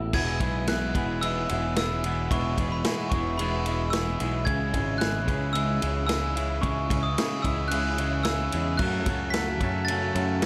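A lightly reverberant, cut-from-a-longer-piece recording of upbeat yet wistful indie rock at 111 BPM in E major, where a ringing, bell-like glockenspiel with soft plastic mallets carries the melody through slapback echo over a twangy clean guitar riff, a crunchy overdriven guitar riff set back in the mix with chorus and slapback echo, a bright, direct picked bass, and a punchy, up-front vintage drum kit with dark cymbals entering at 0.1 seconds, as the chords move from E to C#m at 4.5 seconds and F#m at 8.8 seconds.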